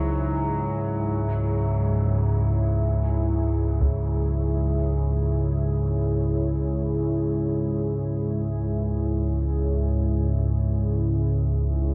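An up-front analog drone, detuned and warbling with vintage sawtooth and pulse-width character, anchors this ominous, desolate dark ambient fragment in C# minor, drifting in free time on a single C#m chord. Above it, a deep, moody pad with ring-modulated, wave-folded edges holds sustained chords through chorus and its own reverb, while a smooth, vintage grand piano sounds faint arpeggios through a delay. At 3.8 s a band-limited taiko ensemble strikes briefly in the background with heavy sticks, all set in a huge ambient reverb with a dark production.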